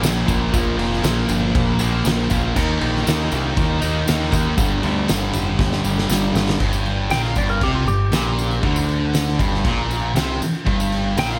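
Raw and rowdy, this cut from a longer garage rock piece drives along at 118 BPM in a straight 4/4. A thick, double-tracked fuzz guitar sits up front playing the riff over Bb5, Eb5 and G5 chords, while a growling, punchy picked electric bass adds overdriven grit underneath. An oversized low-tuned drum kit fills the bottom with a boomy kick, fat snare and dark cymbals in a stone-room sound with a rolled-off top, and a jingly tambourine rattles in the background. After a drum fill at 5.6 seconds, the music shifts into a new section at 6.6 seconds, and a clean, twangy lap steel guitar enters at 7.1 seconds with a compressed, scooped slide melody. The overall mix is dry, with little reverb.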